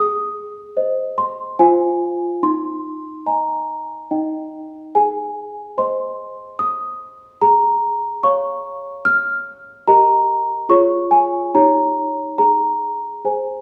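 Tender and dreamy, this classical lullaby in Ab major sways in 3/4 at 72 BPM as a small solo celesta, bell-like and mellow with soft felt hammers, sits up front and rings sweetly through a lush recital-hall reverb across the 13.6-second passage cut from a longer piece, its harmony easing from Ab through Fm and a suspended Eb before settling home on Ab.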